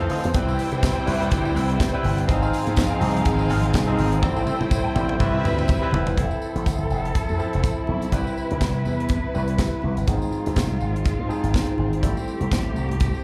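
A joyful, danceable disco excerpt at 123 BPM in C major opens with lush bowed strings, a barky, overdriven tine electric piano with phaser and slapback echo, a twangy clean guitar with wah and chorus tucked in the background, and a punchy, bright slap bass through an envelope filter, soon joined by a tight, airy funk kit with a high-tuned snare, very quiet hard-hand congas and a jingly tambourine, all heard as a live gig through the venue's PA in club reverb, with the rich string line and guitar dropping out after a drum fill that runs from 4.2 to 6.2 seconds while the vibrato-laden sustained string chords carry on over Fmaj7, Cmaj7, Ab6 and Am7.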